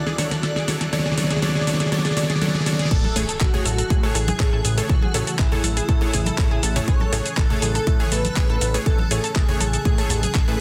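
A punchy, layered electronic kick sits up front in this euphoric, uplifting progressive house passage, landing at 2.9 seconds when the build-up gives way to the drop. Before that, a pop drum kit with a fat snare, metallic hats, handclaps, shaker and crash plays a fill, while a shimmering, ethereal ambient pad holds a Dmaj7 chord under a filter sweep, and a very quiet riser swells toward the impact. At the drop the harmony moves to Amaj7, and a fat, thick analog sawtooth bass enters with very quiet, close and dry congas and bongos struck with hard hands. Throughout, a thick, bold unison lead carries a mellow melody with vibrato and ensemble chorus, joined by a lush, bright pluck playing arpeggios and a background supersaw stab, all three with delay and sidechain pumping. An airy, dreamy second lead floats behind from 2.9 seconds, while a glassy texture of drifting overtones lingers on a single high note. 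The mix sits in a moderate stage reverb and is densely limited in a modern master.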